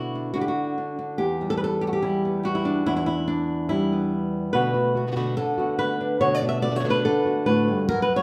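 Set in a straight 4/4 at 143 BPM, this short flamenco fragment, cut from a longer piece, moves in B minor with a fiery yet mournful mood. A fingerpicked acoustic flamenco guitar carries the melody throughout, its dark tone placed up front, with an audible finger squeak adding a close, human edge. At 4.5 seconds a second fingerpicked acoustic flamenco guitar joins with stabs, its warm colour sitting further back beneath the lead. The harmony moves from Bm to Em at 1.2 seconds, then settles on Bm7 as the stabs arrive. A wet, large studio reverb surrounds the playing, giving the guitars a spacious, resonant bloom.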